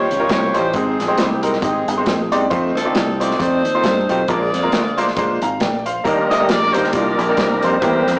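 Uptempo gospel at 136 BPM in Eb major, swinging and soulful with a reverent glow, as a loose, vibrato-laden saxophone section carries the melody over brilliant, up-front grand piano chords, a growly, punchy fingered electric bass, and a dark, smooth drum kit of hi-hat, tight kick and snare. At 6.0 s a thick tonewheel organ slips in behind them with sustained chords, its key click, light overdrive, chorus vibrato and slow rotary speaker tucked into the background. The short clip moves from Eb13 through Abmaj7, F7 and Bb7 to Ebmaj7, heard through a stony room reverb and a rough rehearsal-room sound with saturated, small-speaker colour.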